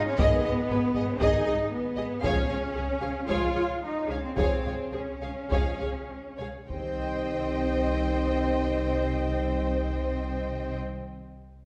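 A heavy-stick taiko ensemble drives this epic, dramatic orchestral film-score passage in C phrygian, pounding until 7.9 s while the tempo, between 99 and 119 BPM in 4/4, slows from 1.2 to 6.7 s over chords moving from Abm to Db and then Cm. A rich, up-front cello section and woody double basses carry the bass, violas accompany, and two lush violin sections share the upper lines, one with a soft-attacked, expressive melody. Distant, roomy French horns and soft-attacked trombones sustain chords, all set in a wet recital-hall reverb, and the passage is a short cut from a longer piece.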